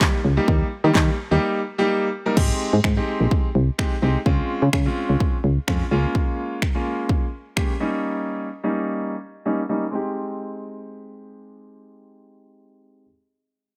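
An upbeat, summery dance-pop excerpt in Ab major at 127 BPM opens with a clear concert grand piano, a pop drum kit and a barely audible analog pluck carrying the melody, its detuned sawtooth-and-square tone touched with chorus and a noise layer before it drops out at 1.9 seconds. A solid FM bass enters at 0.2 seconds, round and mellow with a fast attack, pumping under sidechain alongside the piano. The drums are electronic and layered, with a punchy kick, fat snare, handclaps, finger snaps and a crash cymbal, sitting up front with a tape-warm character. After a brief break from 1.4 seconds, the harmony settles on Abmaj7 at 2.4 seconds and moves through Dbmaj7, Bbm7/Db and Eb7 while a filter sweeps across the smooth, vintage-sounding piano. The drums stop at 7.7 seconds and the bass earlier, leaving the piano with its deep low end to carry the return to Abmaj7 in a dry, close-sounding mix.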